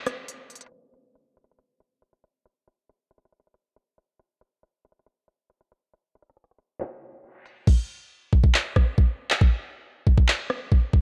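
Hip hop at 138 BPM in a half-time 4/4 feel, this menacing, hard-hitting cut from a longer piece rests entirely on an electronic trap drum kit of knocking kick, crisp hi-hats, handclaps, rim clicks and crash cymbal, sitting tape-warm and up front from 0.1 seconds. After a brief break, a filter sweep runs from 0.7 to 7.7 seconds, and then the hi-hats drop out through the final section to 11.0 seconds. The dry sound is coloured by worn, warbling cassette tape with drifting pitch and a low-pass filter.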